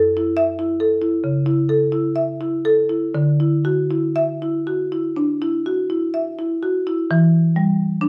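Contemporary classical music for solo marimba, this brief passage cut from a longer piece has a hypnotic, flowing mood. The tempo sits around 58-68 BPM in 4/4, played with a rubato feel that lets the time breathe. The marimba, struck with medium hard mallets on padauk bars, sounds woody and airy, sitting up front in the mix and spanning a range from F#2 to E5 across its 8.1 seconds. The harmony moves from F#m7 at the start to Dadd9 at 3.1 seconds, then arrives on Em at 7.1 seconds. A light reverb gives the instrument a gentle sense of space around its warm tone.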